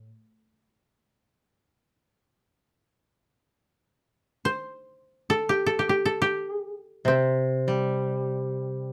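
Still and austere, this short fragment of Japanese traditional chamber music unfolds in free time, with a mellow, woody koto carrying the melody between C4 and C5 throughout, joined by a bright second koto in the C3 to G3 range that sounds only at the very start and again from 7.0 seconds, both played with fingerpicks, dry and up front in a dark production with moderate studio reverb.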